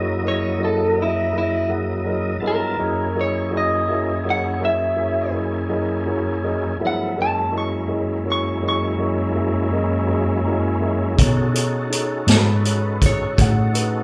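A moderate large-studio reverb gives this live-in-one-room slow blues, cut from a longer piece, a roomy, natural feel as it swaggers along soulfully at 55 BPM in 12/8 in F# mixolydian. An electric guitar through a small old amp carries the melody up front, its picked tone slightly broken-up and compressed, while a dark, mellow concert grand piano with a deep low end accompanies from the start. A tonewheel organ holds full, thick sustained chords, lightly overdriven and colored by chorus vibrato and a slow rotary speaker. The harmony sits on F#13 before the piano takes a fill from 10.1 to 11.2 seconds, leading into B13. At 11.2 seconds a vintage muted picked bass, round and foam-muted, and a vintage acoustic drum kit with a punchy kick, medium-tuned snare, hi-hat and rolled-off top arrive up front.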